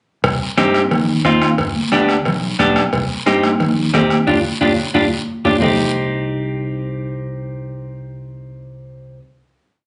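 Captured on a phone in a reverberant club with a dulled top end, this danceable, driving cumbia at 179 BPM in C harmonic minor pairs up-front clean electric guitar picking triad chords with a round, punchy fingered electric bass, over a soft-beater vintage bombo, bright high-tuned congas and ringing cowbell and timbales in the background, and a raspy, close guiro, until a band accent from 4.3 seconds and a drum fill from 4.9 seconds lead into a final C minor chord at 5.6 seconds, held by guitar and bass alone after the percussion stops.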